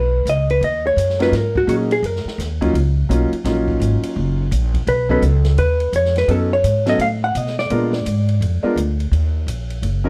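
Cool and moody, this 169 BPM small-group swing and bop excerpt in Eb minor sets a dark, clean, compressed hollow-body electric guitar melody up front, pausing at 2.4 seconds and returning at 4.9, over a woody, growly pizzicato upright bass, a smooth vintage grand piano with deep bass accompanying from 1.2 seconds, and an acoustic drum kit of hi-hat, ride, medium-tuned snare and boomy kick with dark cymbals sitting lower in the mix, all captured in a dry, close 1970s-style studio sound.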